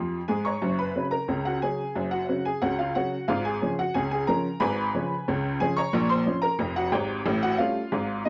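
A dry, close recording in a small room with a 1970s-style studio feel frames this short, playful ragtime passage at 90 BPM in a straight 2/4. A bright, woody, slightly detuned upright piano, worn and up front, plays alone across its span, opening with a quick fill in the first 0.6 seconds before settling onto F# and moving through C#7/G#, Bbm and A7. The jaunty phrase reaches from deep bass to high treble and breaks off at 8.3 seconds, cut from a longer piece.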